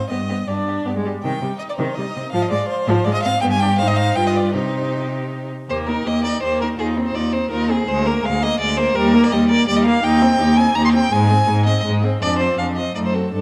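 Restless and urgent, this quick classical-period movement for string quartet at 164 BPM in 3/4 pushes ahead with a rubato feel, moving from C minor to Eb major at 5.7 s and returning to C minor at 10.0 s. A close, smooth first violin carries the melody, while a second violin sits up front with soft attacks, portamento and expressive vibrato on its second line. A clear, focused viola fills in the accompaniment from a distance, and a rich, even cello sits forward in the bass, all within moderate scoring-stage reverb and a dark production in this fragment cut from a longer piece.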